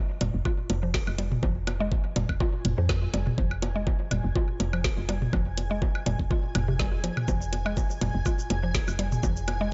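Swung sixteenths at 123 BPM in 4/4 drive this clinical, sparse minimal techno excerpt in F minor, built on an up-front knocking electronic kick and a garage kit of cabasa, metallic hats and snare, joined by tape-warm electronic toms, bongos and woodblock with tape echo, a soft, dark, sidechain-pumped FM bass, a round, percussive mallet-like pluck riff with chorus and tape echo, and a cloudy, blurred, bright granular pad that enters at 1.4 seconds and slowly fades in, held over a single Fm chord in a lightly reverberant mix.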